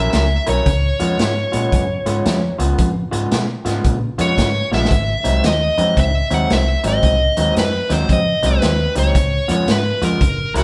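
The band settles into a swung electric blues shuffle at 113 BPM in 4/4, sitting in Db mixolydian with a soulful, laid-back mood, and this excerpt is cut from a longer piece. A raw garage drum kit drives it with hi-hat, a punchy kick and a medium-tuned snare, its sound gritty and saturated with a rolled-off top and a pumping small-room character, and it adds a fill at 4.6 seconds. Underneath, a vintage muted fingered electric bass gives a round, dark, foam-muted bottom, while an electric guitar through a small old amp plays the riff with a bright, twangy, slightly broken-up bite. Up front, a dark, smooth lead guitar with overdrive carries the melody between Gb4 and Gb5. The changes move from Gb7 to Db7, then Ab7 at 4.9 seconds and back to Db7, and the whole band plays live together in one room with a moderate stone reverb.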